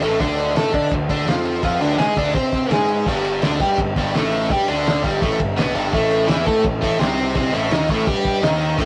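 Raw and swaggering, this garage rock excerpt, cut from a longer piece, drives along at 168 BPM in a straight 4/4. A biting, overdriven electric guitar plays the riff throughout, bright, picked and double-tracked so it sits up front, ranging from G2 to D5. Beneath it, a picked electric bass with growly fuzz and overdrive holds down the low end between G1 and D3. The cloth-damped drum kit sounds thuddy and muffled, with a fat snare, a tight kick, and dark crash and ride cymbals whose top is rolled off. The chords move from D5 at 0.2 seconds to G5 at 3.1 and A5 at 5.9, all within a single section. The rough rehearsal-room sound carries moderate reverb and warm saturation, giving the whole short clip a raw, warm feel.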